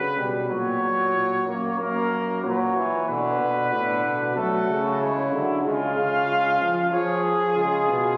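This is a classical imitative canzona for brass ensemble, serious and solemn in mood, moving at 94 BPM in a straight 4/4 and tuned to A4 = 442 Hz. A mellow trumpet carries the melody with vibrato, and a close-miked bass trombone with a rounded, warm tone anchors the bass from the opening. A clear trombone adds accompaniment from 0.2 seconds. At 4.4 seconds a flugelhorn enters with a second line, also played with vibrato. The trumpet, trombone and flugelhorn sound distant and roomy, while the bass trombone sits nearer and more present. The harmony moves from F#/A# through F#, Bm and F#m to C# and C#/E#, all bathed in a wet church reverb, with a phone-in-the-room capture, a club-like ambience and compression giving this short excerpt a hazy, resonant sound.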